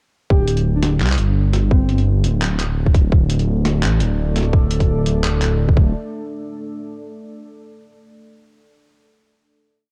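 A home recording on cassette with a digital ambience gives this short, complete half-time drum and bass piece a lo-fi character and a spacious yet tense mood, at 170 BPM in 4/4 with a slight swing on the sixteenths. The drop arrives at 0.3 seconds over a D5 chord, led by a tight, layered electronic kick sitting up front and a deep, rumbling detuned saw bass holding long, dark, beating notes. A gritty, overdriven sampler-style kit adds a sparse half-time beat of medium-tuned snare, closed hi-hat and handclaps, compressed and re-recorded in a small room. Floating in the background, a soft, breathy, flute-like synth lead with chorus, vibrato and tape echo plays brief melodic phrases early in the drop. A moody, wave-folded ambient pad with ring modulation, chorus and reverb fades in through a slow attack at 4.0 seconds, pumping with sidechain compression as its chords slowly shift, and it carries the final chord from 5.9 seconds to the end.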